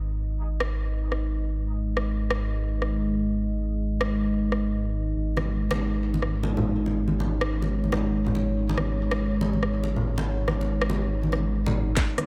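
A dark, detuned sawtooth bass rumbles in up front on a low G#1 from the very start of this brooding deep dubstep excerpt, its saturated, beating tone sustained under a G#5 chord. Almost at once a deep ambient pad rises with a slow attack, spreading moody, chorused sawtooth chords from G#3 to D#5 while a filter sweep moves through it across the whole section. Garage drums arrive at 0.6 seconds in a half-time feel at 141 BPM with a 59% swing on the sixteenths, pairing a cracking snare and rim click with metallic hi-hats that carry a tape-like grain. Low-tuned, thick-skinned congas join at 5.4 seconds, sounding distant yet up front through a dub echo. A knocking electronic kick lands with a drum fill at 12.0 seconds, and the heavy, dreamy mix stays soaked in plate reverb throughout.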